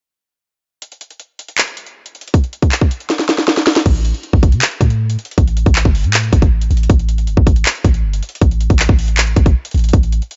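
A tape-warm electronic trap kit opens this short hip hop cut at 0.8 seconds, its hard-clipped kick, sharp snare, metallic hats, handclaps and crash sitting up front in a half-time feel, with a drum fill from 3.1 to 3.9 seconds. At 3.9 seconds a deep, boomy 808-style bass arrives, a clean sine tone with a fast attack and decaying notes that stays dark and up front. The melancholic, menacing mix is dry with dull, rolled-off highs, and it is cut from a longer piece.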